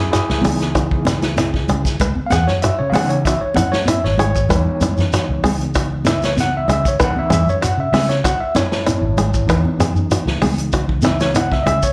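Afrobeat in C# minor at 96 BPM, this short cut from a longer piece has a defiant, hypnotic mood as it rides a single C#m9 chord in a straight 4/4. The overdriven tine electric piano takes the solo for the whole 11.9 seconds, up front and bright, with a barky, gritty bite through a combo amp, shaded by medium tremolo and slapback echo. Beneath it, a fingered electric bass holds down the low end with a dark, round, amped tone, while a bluegrass banjo played with fingerpicks adds twangy, percussive arpeggios treated with tape echo and slapback echo. A vintage drum kit with a punchy kick, medium-tuned snare, hi-hat and a rolled-off top sits in a small, natural-sounding room. High-tuned congas with thick skins and soft hands sit close and dry in the background with a touch of slapback, and a grainy, mellow shekere adds texture. The whole performance comes across like a live gig heard through the venue's PA, wrapped in club reverb.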